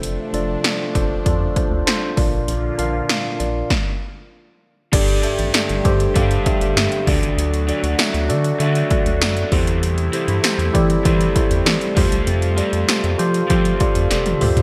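Urgent and moody, this 1980s-style pop excerpt sets a mellow tine electric piano and a rubbery, resonant square bass over punchy electronic pad drums with gated reverb on snare and toms, with a swirling phased analog pad in the background, pausing in a stop at 3.7 seconds before a crunchy overdriven guitar with analog chorus joins at 4.9 seconds, all bathed in plate reverb with bright digital production and closing on a drum fill at 14.1 seconds.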